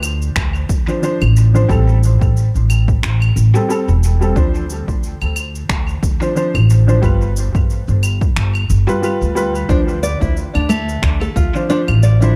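A growly, woody pizzicato upright bass sits up front with a sidechain pump in this mystical, earthy organic downtempo passage, cut from a longer piece, at 90 BPM in a swung 4/4 and D dorian over Dm7, Am7 and G7, joined at 0.4 seconds by a punchy, overdriven electronic kick, alongside overdriven electronic claves, cabasa and finger snaps carrying dub echo and the air of a large room, a mellow, intimate felt-muted upright piano entering at 0.9 seconds with its own pumping and dub echo, and fingerpicked nylon-string guitar arpeggios, finger squeak and all, arriving at 9.7 seconds, the whole mix steeped in echo-heavy studio reverb.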